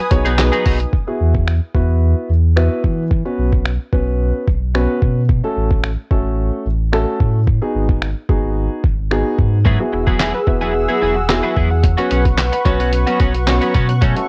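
Dance-pop with a euphoric, carefree mood, this excerpt rides a straight 4/4 groove on a lo-fi sampler-style drum kit, whose thumpy kick, fat snare, hi-hat, handclaps and finger snaps sit up front with a compressed, pitched-down, muffled character. Beneath it, a deep sub bass with octave, built from sine and triangle tones, holds a full, sustained low end and pumps with the sidechain. A dark baby grand piano plays mellow, intimate accompaniment with short sustain and audible action noise, while a twelve-string electric guitar adds a bright, twangy picked riff with analog chorus, heard briefly at the start and returning at 9.7 seconds. A smooth, detuned sawtooth pad holds sustained chords with a slow attack, and from 9.7 seconds a tight, driving sequenced synth with a filter pluck and analog delay runs arpeggios in the background. The harmony moves through Eadd9, Bsus2, F#m/A and G#m7, and the whole piece carries the character of a home cassette recording in a lightly reverberant space.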